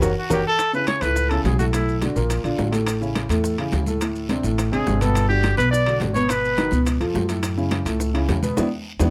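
A breathy trumpet leads this sultry, fiery Afro-Cuban jazz excerpt, its mellow, scooped phrases carrying a light vibrato and a distant, roomy quality even as it sits up front, appearing at 0.2 seconds and again at 4.7 seconds. Beneath it, a grand piano supplies intimate, natural accompaniment with audible action noise, while a woody, thumpy upright bass played pizzicato anchors the harmony close to the listener. The percussion section fills out the groove: high-tuned congas with a thick skin, ringing metal-shell timbales, and very quiet, round, low-tuned cowbell and bongos. Raspy guiro and grainy maracas sit further back, adding texture. The passage opens with a drum fill and band accent before settling into a chord progression rich in suspended, seventh and altered colors, and it closes on another band accent at 8.6 seconds, all under a light reverb.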